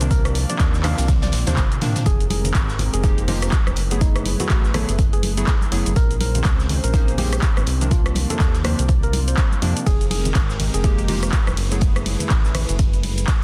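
Hypnotic and deep, this 123 BPM deep house excerpt swings its 16ths over a minor-eleventh progression moving from Cm11 through Fm11, Gbm11 and Bbm11, with an up-front, tape-warm electronic kick, a punchy analog drum machine of handclaps, hi-hat, ride, rim click, shaker and toms, a gritty, very quiet breakbeat kit, and a drum fill at 1.1 seconds before bright congas enter in the background at 2.3 seconds, all alongside a round, dark, tube-saturated bass, detuned wave-folded keys stabbing with chorus and tape echo, a smooth, warbling pad sustaining behind with lush chorus, sidechain pumping on the bass, keys and pad, and a worn, slightly out-of-tune tine electric piano melody with tape echo, sealed in a dense, heavily limited modern master.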